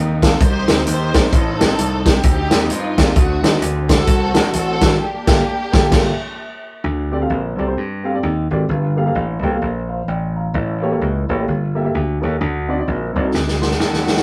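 A lush, bowed string section carries a fervent, solemn melody with vibrato and portamento over woody upright piano and a bright, punchy slap bass, while a roomy, distant big-band drum kit joins almost at once in this swinging uptempo gospel passage cut from a longer piece. The band hits accents together from 5.0 seconds, the piano adds a short fill, and the strings and drums drop out, leaving piano and bass to carry the rich extended chords. The drums return with a fill at 13.3 seconds, the strings reappear briefly at the close, and the whole sits in a rough rehearsal-room sound with moderate reverb.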